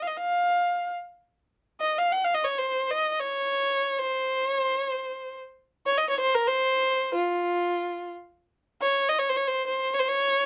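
Unmeasured and in free time, this short cut from a longer Persian piece unfolds in dastgah Homayun on F. A single bowed kamancheh plays alone for the full 10.5 seconds, its clear, focused tone sitting up front and moving through a range from F4 to a microtonally inflected Gb5. Vibrato and portamento color its line, lending the playing a passionate quality. The phrase returns at 8.4 seconds, restating the opening material before the cut ends. A light reverb surrounds the instrument, and the top end is gently rolled off, giving the sound a warm character.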